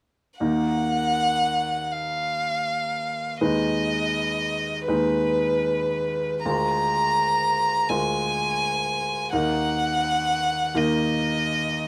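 Yearning and elegiac, this romantic classical duo for violin and grand piano moves slowly in Eb minor at 40 BPM in dotted quarters, its 6/8 pulse stretched by rubato and uneven beats. A rich, focused solo violin sings the melody up front with vibrato, while a bright, brilliant grand piano supplies natural-sounding accompaniment from the low bass upward, both playing together from 0.4 to 11.9 seconds. Light reverb surrounds the pair as the harmony passes from Ebm through Abm/Eb and Bb7/D before settling back on Ebm in this fragment of a longer piece.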